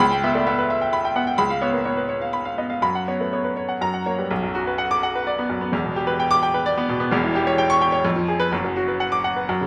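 In a rubato 3/4 at about 127 BPM, this passionate, stormy B minor virtuoso piano study, cut from a longer piece, sets a solo baby grand up front with a clear, natural tone and short sustain, ranging from E1 to D6 in a moderate recital-hall reverb, as its harmony moves through C#m7b5 and C#7 to an F# resolution before landing on Bm at 4.3 seconds and moving on through Em7 and diminished colours toward Bm/F# at 8.5 seconds.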